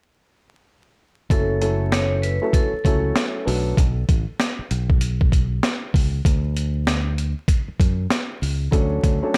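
A swung boom-bap hip-hop groove at 97 BPM in 4/4 starts at 1.3 seconds, with a gritty, compressed sampler-style kit (thumpy kick, high-tuned snare and hi-hat) sitting up front beside a round, punchy fingered electric bass, setting a tough, moody tone in B minor. Over F#m7, B7 (third omitted) and Dmaj7 chords, a dark, boxy baby grand with cassette-tape coloring and plate reverb adds mellow, short-sustained accompaniment, while a bright, metallic vibraphone struck with hard mallets rings out an airy melody that ends at 3.7 seconds. Vinyl crackle runs through this short cut from a longer piece, and the overall room sound stays fairly dry.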